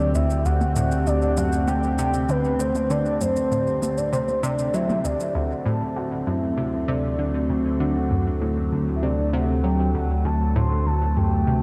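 A soft, round octave-layered synth lead with vibrato, tremolo and tape echo floats up front over an evolving, morphing wavetable pad, a tight, nasal sequenced sawtooth riff and a mellow analog drone bass on D, while electronic shaker and congas play until 5.3 seconds, inside a vast cathedral reverb in this cosmic, hypnotic, sequencer-driven space-music excerpt at 98 BPM that moves from D7sus4 to D7 at 5.4 seconds.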